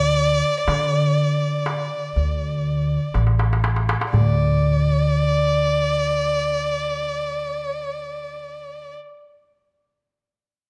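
Lightly reverberant and up-front, this longing, soulful Arabic maqam ensemble fragment moves in 10/8 at 122 BPM, with a rich, expressive bowed violin singing around D5 with vibrato, portamento and a soft attack over a woody, growly pizzicato upright bass, while a crisp, deep metal-shell darbuka played with soft hands adds a fill from 3.1 s and drops out at 4.6 s, shortly after the music turns to a new passage at 4.1 s.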